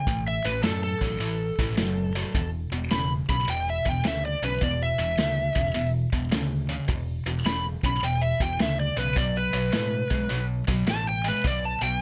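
Blues rock in a power-trio vein with a southern rock accent, this driving, gritty cut from a longer piece rides a swung 4/4 feel. An overdriven slide guitar, played with fingerpicks and sitting up front, carries the melody in a bright upper register. Beneath it, a tight, double-tracked distorted guitar picks a low riff, while a picked electric bass adds a growly, amped weight. A vintage acoustic drum kit of hi-hat, kick and snare brings a punchy kick, a medium-tuned snare and a rolled-off top, its studio room pumping around it. The harmony moves from A5 to E5 at 2.3 seconds and on to B5 at 9.2 seconds, in a dry mix with little reverb.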